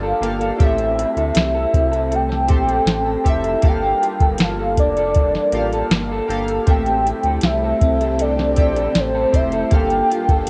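Indie pop and bedroom pop at 79 BPM in a wistful, lonely mood, this cut from a longer piece sets a round, dark octave-layered synth lead with tremolo and chorus over glossy retro keys, a slightly broken-up lo-fi guitar with warbly pitch drift, a deep ring-modulated analog bass and an up-front rhythm box with crisp snare, metallic hats and 12-bit grit, while a mellow phased string machine joins in the background at 6.7 seconds, all wrapped in light reverb and the texture of a home cassette recording over Gm9 and Am7 chords.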